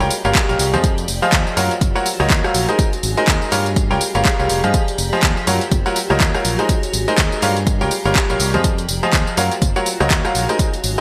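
Swung sixteenths drive this soulful, energetic piano house excerpt, where a punchy overdriven kick and an up-front kit of bright hats, handclaps, rim click and tambourine, gritty with overdrive and gated reverb, push a brilliant, worn grand piano riff with short sustain and digital delay, while a fingered electric bass and a cloudy, evolving granular pad in the background pump under sidechain through a lush hall and a cycle of Gm7b5, Fm7, Gbmaj7 and Abadd9 chords in a bright 1980s-style digital production.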